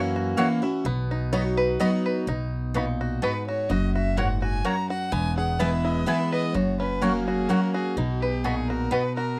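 A joyful, lively bluegrass piece in 3/4, in B major at 126 BPM, cut from a longer piece, opens on a twangy, fingerpicked banjo solo over bright, full-bodied picked dreadnought guitar and a woody, thumpy gut-string upright bass up front; double-stringed mandolin stabs arrive at 0.4 seconds, and at 3.2 seconds a single earthy bowed fiddle with light vibrato and a smooth top joins the banjo on the melody, all captured in a dry, close 1970s-style studio sound.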